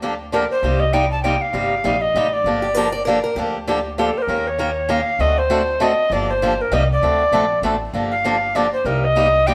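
An airy alto recorder leads this fiery, bittersweet slice of acoustic string swing, its straight tone and crisp, chiffy attack sitting close and up front as it enters at 0.3 seconds and takes a solo from 7.9 seconds. Underneath, a bright, boxy picked swing-style guitar carries the accompaniment up front, while a woody, thumpy upright bass with gut strings plucks the low end through the whole passage. A picked archtop guitar with fresh strings adds a brief second line between 2.6 and 3.9 seconds. In G minor at a brisk 197 BPM in 3/4 with a swung eighth-note feel, the harmony moves through chords such as Gm7, Cm7, Eb7 and D7b9. The band plays live together in a stone room whose wet reverb gives the sound an echoing, resonant space.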